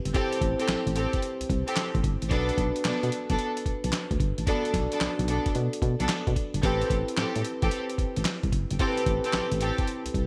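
A mellow, clean tine electric piano opens the clip with a subtle chorus, and at 0.1 s a gritty, sampler-style drum kit, a round FM bass and a lush string section join in. This is slick, punchy new jack swing R&B in A dorian at 111 BPM in 4/4, with a 66% swing on the sixteenths giving the groove its bounce. The compressed, tape-warm drums sit up front, pairing a thumpy kick and a medium-tuned snare with hi-hat and handclaps, while the fast-attack FM bass holds down the low end. The bowed string section plays rich stabs with vibrato and a smooth top, sent through a digital delay, and the electric piano carries the accompaniment underneath. The chords move from Am7 to Bm7 at 2.3 s and back to Am7 at 6.6 s before the strings drop out at 9.8 s. A moderate plate reverb and digital ambience frame the bright 1980s-style production, with a faint mains hum audible in this excerpt from a longer piece.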